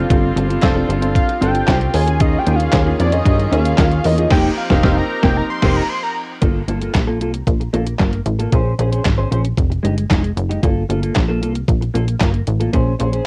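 Early-eighties boogie funk at 114 BPM in a straight 4/4, danceable and funky, cut from a longer piece and captured as a home cassette recording with light reverb. For the first 6.4 seconds a fat, detuned analog lead with phaser and vibrato takes a solo over clear, slightly worn grand piano and rich, floating bowed strings on sustained suspended-ninth chords, with a band accent from 4.3 seconds. The piano and strings then drop away, leaving the lush-chorused clean electric guitar riff, the punchy, plucky wave-folded bass and a thumpy, detuned 8-bit drum machine up front to ride minor-ninth chords to the end, joined by very quiet, crisp group handclaps that fade out about a second earlier.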